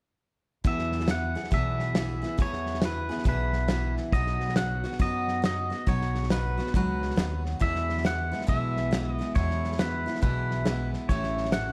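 A dark, dry production with little reverb frames this easygoing, nostalgic honky-tonk excerpt in E major, swinging along at 138 BPM. From 0.6 seconds a bright, full-bodied dreadnought acoustic guitar sits up front with audible finger squeak, over woody pizzicato upright bass and a smooth studio drum kit with a punchy kick and medium-tuned snare. From 0.7 seconds a clean, twangy pedal steel takes the solo, its compressed slide lines shaped by volume swells, as the chords move from E to B and back to E before reaching A at 11.1 seconds.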